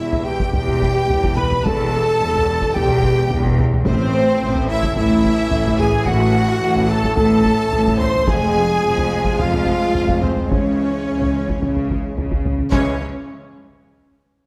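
A straight 4/4 pulse from a close, dry taiko ensemble struck with heavy sticks drives this heroic, dramatic cinematic cue, cut from a longer epic orchestral score. Lush bowed violins carry the melody in the background, joined on a second line by an expressive violin section and a hollow concert flute, while violas play intense accompaniment and a tight French horn section and bright, close-miked trombones hold sustained chords. Distant cellos and clear double basses anchor the bass through a moderate scoring-stage reverb, as the harmony moves from Em to Am, Fm and finally C#m at 10.5 seconds.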